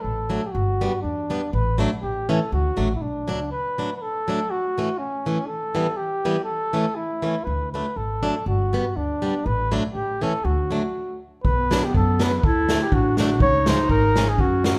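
A lightly swung, bouncy 2/4 at 122 BPM with a touch of rubato drives this jolly alpine dance-band fragment in D major, where a soft-attacked, classically styled flugelhorn carries the melody up front over boxy, picked swing guitar and a dark, woody pizzicato upright bass that drops out and returns at 7.5 seconds. After a brief stop at 10.9 seconds, the music turns to B minor at 11.4 seconds as a swinging big-band kit with punchy kick and medium-tuned snare joins, and a warm, classical clarinet adds a second line. The band sounds live in one large studio with moderate reverb.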